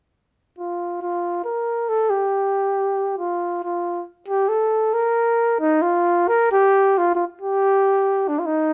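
Mexican folk in a festive yet romantic mood, moving at 138 BPM in a lightly swung 3/4. A lone trumpet carries the whole passage from 0.6 to 8.7 seconds, sitting up front with a dark, smooth tone, soft attacks, light vibrato and a classical style of playing between D4 and Bb4. The phrase turns to new material at 6.2 seconds, and moderate studio reverb gives this short fragment of a longer piece a dark, warm production.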